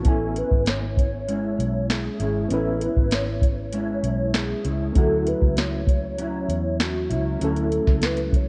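Indie pop with a bedroom pop haze, this laid-back excerpt is cut from a longer piece and sits in a straight 4/4 that drifts from Amaj7 to Dmaj9 at 5.0 seconds. A hollow, woody, clarinet-like synth lead carries the melody, its soft sustained tone colored by ensemble chorus and vibrato. A mellow electric guitar plays clean, fingered accompaniment with a dark edge, its ensemble chorus and pitch drift giving it a gentle warble. Further back, a reedy, slightly out-of-tune electric piano shimmers with fast tremolo through its built-in speakers. Up front, a soft vintage rhythm box sets a deep kick, crisp snare and metallic hats, joined at 0.1 seconds by a round, punchy, foam-muted fingered bass. Light reverb and the worn, wavering character of old cassette tape wrap the mix in a dreamy, faded glow.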